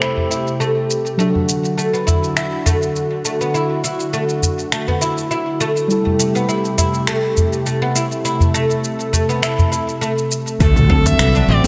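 This organic downtempo fragment opens with a woody, plectrum-plucked oud playing arpeggios up front, set over dark, muted felt-like synth keys that sit in the background under a filter sweep with chorus, delay and sidechain pumping. A smooth, detuned analog pad sustains the chords through the same stretch. A deep house kit of finger snaps, smooth hats, shaker and toms sits in a small room, joined at 0.2 seconds by a small acoustic udu. The mood is earthy and warm, with a light swing over harmony that moves from Am7 to D and back to Am7. At 10.6 seconds an impact marks the arrival of a clear, bowed kamancheh melody with vibrato, a fretless electric bass with tube saturation, and a deep, layered electronic kick, all over a D7 chord. A lush hall reverb surrounds the whole piece.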